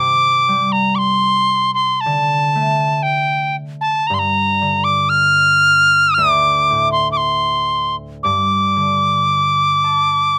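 A rough home demo mix with a light reverb frames this brief fragment of a Celtic slow air in G minor, tuned to A4 = 439 Hz. The mood is longing and haunting, moving at a rubato 58 BPM in 4/4. A wooden whistle carries the melody up front and close-miked, its reedy, pure tone sitting between G5 and F6 with a crisp chiff on each attack and a touch of vibrato. Beneath it, a fingerpicked concert harp sits lower in the mix, its acoustic, ringing strings spanning D2 to A5 as the harmony moves through C5, D5, G5, D5 and back to G5. Near the close, the harp adds a short fill from 9.3 to 10.4 seconds.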